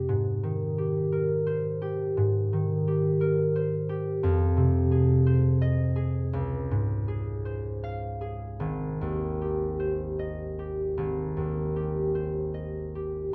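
A solo concert harp rings out up front, fingerpicked across a span from Ab1 to F5 in a graceful, dreamy classical piece in Ab major, taken from a longer work and tuned to A4 = 438 Hz. The slow rubato pulse sits around 50-59 BPM in 4/4, drifting through Abmaj9, Fm7, Dbmaj7 and Abmaj7 over 13.3 seconds. A moderate large-studio reverb and a dark, warm production give the acoustic harp a soft, enveloping glow.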